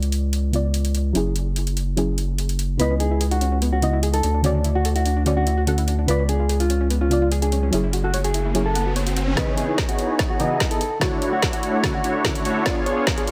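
A soft, round pluck with chorus and dub echo opens over a deep, saturated sub bass and a trap kit of woody snare and metallic hats in this bittersweet, lush half-time future bass at 146 BPM in C# phrygian, with a dark, clean, fingered electric guitar melody with vibrato and tape echo and a second pluck playing arpeggios arriving at 2.8 seconds, a riser entering at 7.8 seconds, and at 9.4 seconds a build-up bringing huge, bright, detuned supersaw chords under a low-pass filter sweep alongside a punchy, overdriven electronic kick and a drum fill, all over sidechain pumping and light reverb on chords such as C#m9 and Dmaj9.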